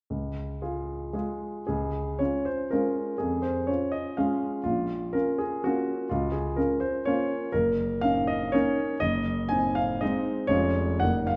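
Heard from further back in a reverberant recital hall, with a soft, rolled-off top end, this short excerpt from a longer piece features a solo baby grand piano that still sounds natural and up front. It is a romantic classical dance in 3/4 and D-flat major, rustic and graceful, with dotted rhythms and a rubato feel that moves between 103 and 138 BPM. The piano spans F1 to Ab5, and its harmony passes through B-flat minor and an Ab7 over Gb before settling on Db/F at 10.5 seconds.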